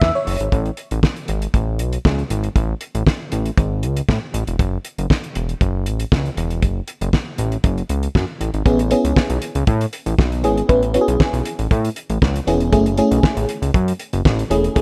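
Lightly reverberant studio sound frames this late-night, danceable slice of early-eighties boogie funk in F# minor at 118 BPM, cut from a longer piece. A damped, dry 70s drum kit with a fat snare and tight kick sits up front beside a thick, detuned sawtooth analog bass with a filter sweep, both running throughout as the harmony moves from Amaj7 to F#m7. The lush, dreamy FM electric piano with its soft pad layer is heard only briefly at the start, then returns at 8.7 seconds on an F#m9 chord, its chorus, phaser and slapback echo giving it a shimmering gloss.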